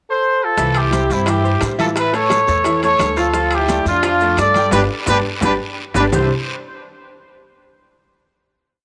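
This is a complete, brief salsa piece in C major at 173 BPM, danceable and joyful from its first moment. A clear, punchy horn section sits up front with the hook-phrase melody, partly doubled in thirds, with light vibrato, a smooth top and a touch of tape echo, starting alone on a short pickup before the band joins at 0.6 seconds. The bright grand piano plays a montuno in octaves, brilliant yet worn, with short sustain. Beneath it, the woody upright bass plucks a tumbao that anticipates the chords as the harmony moves from C through A and D minor to G. The percussion is layered: thin-skinned congas with slaps and open strokes, very quiet low-tuned bongos in steady eighths with hand bell, ringing vintage timbales on shell and bell, a raspy guiro and grainy maracas, several of them set in the background. A drum fill and band accent drive from 4.7 seconds into a final Cadd9 chord at 6.1 seconds, all in a lightly reverberant studio space.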